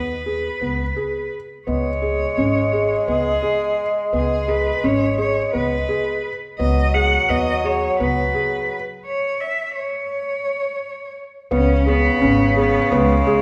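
A straight 7/8 pulse at 171 BPM (eighths) drives this urgent, pensive contemporary chamber excerpt, where a clear, bowed cello with vibrato carries the melody over soft, felt-muted upright piano arpeggios with audible action noise and a woody, growly pizzicato upright bass, joined at 1.7 s by a distant, roomy bassoon second line, set in a recital hall reverb, before a full stop from 9.1 s to 11.5 s.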